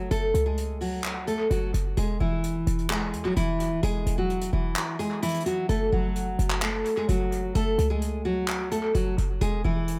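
An echo-heavy mix with light reverb and small room ambience frames this short, hard-hitting, menacing trap cut from a longer hip hop piece, moving at 129 BPM in a half-time feel in F# minor over F#m and E. Up front, a bright, full-bodied nylon-string guitar carries the fingerpicked melody through analog delay, with fresh strings and an audible finger squeak, while a punchy, tight 808-style bass with a sine tone, a noise layer and a fast, decaying attack anchors the low end. A soft brush drum kit with handclaps and hi-hat sits further back in a natural, acoustic room sound, also fed through analog delay, and its kick drops out from 4.8 to 5.7 seconds.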